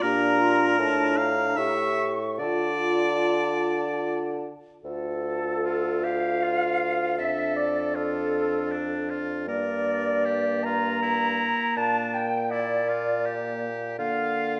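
Serene and tender, this passage from a longer work is a slow romantic movement for wind quintet in a three-beat metre, shaped with a flexible rubato. The concert flute carries the melody with an airy, tongued tone and expressive vibrato, yet it sits distant and in the background, while the bright oboe sings a second line up front with a light shimmer of vibrato. Beneath them, the clarinet adds smooth-topped accompaniment and the close-miked French horn supplies a mellow inner voice. The warm bassoon anchors the bass, punchy and present with a gentle vibrato of its own. All five players sound together throughout, the harmony drifting from Bb through Dm and A7 toward Gm and Bb/D, and the whole ensemble is bathed in the generous reverb of a recital hall.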